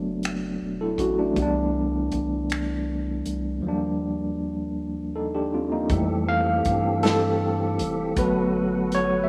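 A slow, straight 6/8 pulse at 53 BPM carries this intimate R&B fragment in F lydian, where a barky, overdriven tine electric piano with fast tremolo sits up front over a round, deep analog bass and a distant, roomy soul drum kit of finger snaps, hi-hat, tight kick and snare, before a clean tonewheel organ with key click, chorus vibrato and slow rotary speaker enters with sustained chords at 5.9 s as the electric piano takes a solo, the whole rough home demo mix sitting inside a lush hall reverb.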